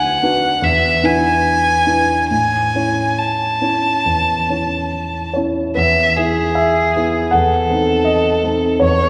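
Lyrical and serene, this romantic classical excerpt pairs a single bowed violin and a concert grand piano in 4/4, moving with a flexible rubato between 67 and 82 BPM. The focused, vibrato-rich violin carries the melody up front with a smooth top, while the polished piano accompanies with deep bass and short sustain, both parts playing throughout. The harmony settles in A major before turning to E major at 5.8 s, and the long, wet church reverb of 3.0 s gives the duo a spacious concert-hall glow.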